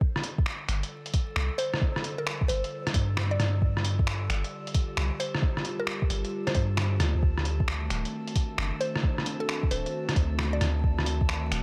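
A soft, produced electronic kick sits up front from 0.0 seconds, joined almost at once by a muffled, tape-warm lo-fi sampler kit of finger snaps, hi-hat and rim click, a deep, round 808-style bass, and a warbling, nostalgic pad whose dark sustained chords pulse with sidechain pumping. In this rainy, nocturnal future garage excerpt, with its swung sixteenths, a faint glassy texture of drifting overtones hovers in the background, and at 1.6 seconds a woody, mellow mallet-like pluck enters carrying the melody through chorus, phaser and analog delay. The harmony moves from G9sus4 to D7b9 at 7.2 seconds over a dry mix laced with vinyl crackle.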